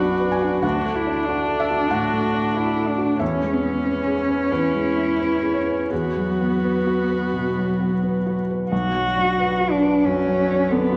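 This neoclassical piano and strings piece is melancholic and fragile, moving in 4/4 with a loose, rubato feel across a short cut from a longer work. A felt-muted upright piano carries the accompaniment, its mellow, intimate tone sitting up front with the soft clatter of its action audible beneath the notes. A rich viola adds a second layer of accompaniment, played by one player with a light vibrato, soft attacks and an airy sul tasto bow. A dark cello plays the second line, bowed close and sul tasto with a smooth top and its own vibrato. The harmony moves from B minor through D, C#m7/E and Eadd9 before the opening phrase returns on B minor at 8.7 s, all set in a wet recital hall reverb with a dusky, warm production.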